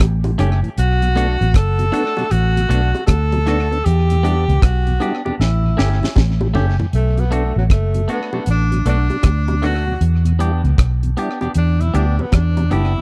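The bass and drum kit open together at 0.0 seconds, the dark, round, foam-muted bass sitting up front with transformer saturation while the deep kit offers a tight kick, a high-tuned snare, rim clicks, hi-hat and toms, its dry sound touched by tape echo. This is a hypnotic, serious roots reggae cut from a longer piece, moving at 78 BPM in 4/4 with a swung sixteenth-note feel in B minor, cycling through Bm7, Em7 and A7. A mellow tonewheel organ with key click, light overdrive, chorus vibrato and a slow rotary speaker slips in beneath, joined by tight, high-tuned vintage bongos in the background and a bright, twangy, picked electric guitar carrying spring reverb and tape echo. A tenor saxophone with light vibrato and a distant, roomy tone arrives at 0.8 seconds, and after a drum fill it takes a solo from 6.9 seconds to the end. The whole recording has the dry, close feel of a 1970s studio session.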